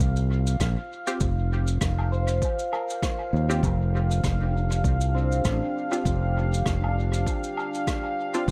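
A 99 BPM groove in 4/4 with a light 16th-note swing opens this hazy, spacious ambient dub excerpt, with a distant, roomy shaker, rim click and woodblock trailing dub echo, and a punchy electronic kick entering at 0.6 seconds. A growly, overdriven fingered electric bass sits up front beneath a deep, dark sawtooth pad whose slow-attack chords carry chorus and built-in reverb. In the background, a ringing, thumb-plucked concert harp arpeggiates through tape echo, and from 1.1 seconds a muted, detuned dub chord stab with a filter sweep adds chorus and echo as the harmony moves from Fsus2 to Dm7/F at 3.6 seconds in an otherwise dry, echo-heavy mix.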